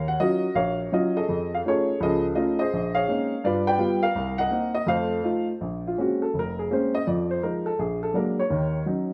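Swung eighths at 166 BPM in 4/4, loosened by rubato, set the pace for this brief, late-night, smoky solo jazz passage in Bb minor, cut from a longer piece. A warm, natural baby grand piano sits up front, spanning F1 to G5 through rich harmony such as Ebm9, F7alt and Bbm11 before moving into its solo turn at 5.6 seconds over Bbm9, Fm7 and Bb7b13. A moderate studio reverb gives the sense of a single room heard live.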